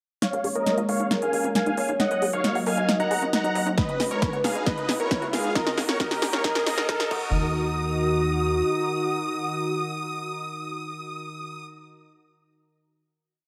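Soaring and euphoric, this short uplifting trance piece in Eb minor runs at 135 BPM in a straight 4/4, climbing through a build from 0.2 s with a drum fill and a filter sweep on the huge, bright supersaw lead, whose repeating riff melody moves in thirds and sixths with sidechain pumping and digital delay. A velvety synth lead with chorus and vibrato carries a second riff, a lush, warbling unison pad holds the Bbm7, Ebm and Abm7 chords with sidechain pumping, and a very quiet sequenced synth runs a tight 16-step arpeggio above a plucky, rolling sixteenth-note analog bass and a faint riser. The overdriven big-room kit drives the build with crisp hats, a punchy snare and crash, joined at 3.8 s by a four-on-the-floor electronic kick, before a final hit at 7.3 s lets the leads and pad ring out in a dark production with a lush hall reverb.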